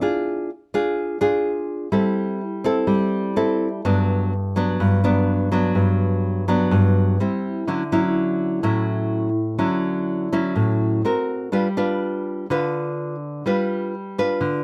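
Close, detailed microphones and little reverb place a lone nylon-string guitar up front, giving this cut from a longer bossa nova piece an intimate, dry presence. The mood is romantic and sophisticated, moving at 125 BPM in 4/4 with a straight feel. The fingerpicked guitar has a warm, classical acoustic tone and spans G2 to B4, carrying the harmony entirely on its own. In G major it moves through Ddim, Am7/G and Gmaj7 before a C/G. At 7.7 s the key shifts to D major, opening on a Dmaj9 and then turning through F# to a closing G7.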